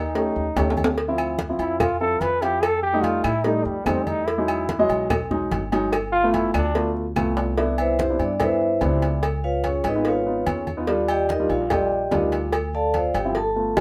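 The rhythm of this sophisticated, lively Afro-Cuban jazz excerpt moves in a straight 4/4 at 145 BPM, with congas, cowbell and bongos, timbales and agogo bells, and claves building a close percussion bed under light reverb, the thin-skinned congas and woody claves sitting in the background. A thumpy upright bass with gut strings plays pizzicato underneath, while a dark, mellow grand piano with short sustain supplies accompaniment through shifting extended chords such as Eb7#11, Dm9 and Emaj9. A bright, punchy trombone takes the first solo up front with light vibrato and a forceful, vintage jazz tone, ending at 6.9 seconds. Drum fills mark the start and the handoff at 7.4 seconds, and the claves drop out at that same moment. From 7.8 seconds a smooth vibraphone, struck with medium hard mallets and played with the motor off, takes the melody with a metallic, ringing sound over chords moving from Cmaj7 through Db9 and Ebmaj7 to Dm7.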